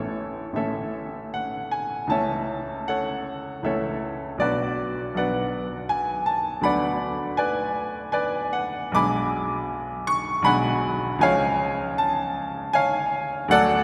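A stormy, bittersweet romantic character piece for solo classical piano in a rubato 3/4 at 79 BPM, tuned to A4 = 441 Hz, this passage cut from a longer work sets a bright, brilliant baby grand close up front with natural tone and short sustain across A1 to D6, moving from A through A/C#, Bm, Bm/D and G#m7b5/B to a C# chord at 11.2 seconds, all wrapped in a wet church reverb with a 3.0-second decay.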